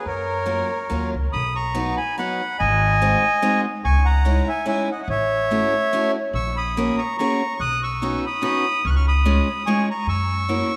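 A reedy accordion carries the melody of this whirling, charming musette waltz, single-reed and dry-tuned, clear and up front, with a touch of tape echo on its line. It swings its eighth notes in 3/4 at 144 BPM in B major, and the short clip is cut from a longer piece. A warm, close violin with vibrato and portamento offers an expressive bowed second line in the background, sounding only for the first 1.1 seconds. From 0.1 seconds an upright bass plucks a woody, dark, thumpy low part on gut strings, while a bright picked steel-string acoustic guitar with fresh strings joins at 0.5 seconds to fill in the harmony. The chords move from F#maj7 through colorful turns like C#madd9 and A6 before landing on F#7, all heard through a lush hall reverb that sits against the rough, small-room feel of a home demo mix.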